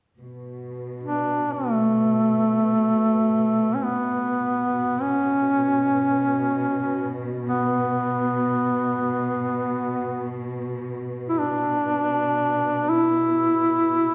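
A close-miked duduk carries a mournful, longing Caucasian lament in free time and B minor, its warm, vibrato-laden folk voice sitting up front as it sings between A3 and E4 from 1.0 seconds. Beneath it, a dark, woody chamber cello section holds a bowed sul tasto drone on B2 from 0.2 seconds, its tone laced with vibrato. A wet concert-hall reverb with a 1.8-second tail gives this fragment of a longer piece the resonance of a church or concert hall.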